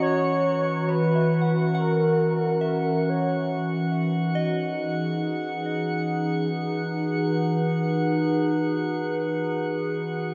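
A velvety, detuned synth lead carries a brief melody over a warbling, nostalgic tape-like pad, a glassy texture of drifting overtones and a soft FM bell that fades in with arpeggios in the background; the lead stops at 3.5 s as the chords move from F#7/E to Emaj7 in this peaceful, luminous ambient fragment, set in a dark, wet reverb with a filter sweep on the pad and a fade-out from 8.1 s.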